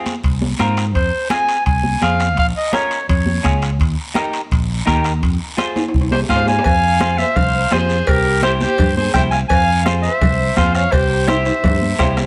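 A clear, present clarinet leads this passionate, danceable cumbia at 168 BPM in F minor, playing up front from 0.9 to 3.6 seconds and returning at 6.1 seconds as a dark, smooth bowed violin with vibrato and tape echo joins with a second line, while the harmony shifts to F harmonic minor at 6.7 seconds. Underneath, a punchy, amped fingered bass and a soft-beater bombo anchor the groove, with a dark, clean semi-hollow guitar with subtle chorus comping through chords like Fm, Bbm, Eb and C7. Raspy guiro, ringing high-tuned congas in the background, and metal-shell timbales and cowbell fill out the percussion, with drum fills closing each half in this close, detailed, lightly reverberant cut from a longer piece.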